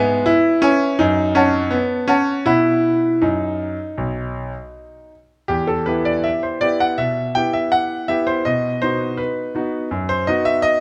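Cheerful and playful, this short classical-period piano sonatina fragment is cut from a longer piece and lasts about 10.8 seconds. A solo grand piano carries the whole passage, its tone clear and smooth with a vintage character and a short sustain, placed up front in the sound. The playing moves in a straight 4/4 feel across a range from B1 to B5. The opening phrase passes through E/G#, F#m and B chords, and at 5.5 s the phrase returns, settling onto an Em chord before B arrives at 8.5 s. Close, detailed microphones and light reverb keep each note crisp and present.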